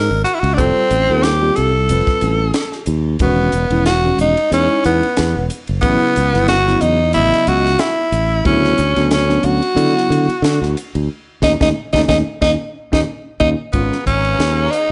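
Lightly reverberant with a softened top end, this funky, slick electric jazz fusion excerpt at 91 BPM in a swung 4/4 puts a raspy, gritty tenor saxophone with vibrato and scooped notes up front, wrapped in slapback echo and plate reverb. Beneath it sit a punchy fingered electric bass, a bell-like tine electric piano accompaniment in the background and a crisp fusion drum kit with a high-tuned snare and dark cymbals. The band hits accents from 11.1 seconds, the drums fill at 13.1 seconds, and a lush bowed string section joins in the background at 13.7 seconds.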